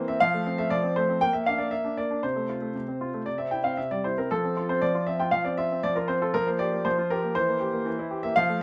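A clear, intimate baby grand piano opens this brief classical-period sonatina passage and carries it alone from 0.0 to 8.6 seconds, moving through F, Bb6, F/C and C before settling on Gm7/F and C7/E. The mood is elegant and playful, with the instrument sitting up front in a natural sound where the action noise is audible beneath the notes. A light reverb adds a touch of space around this fragment, which is cut from a longer piece.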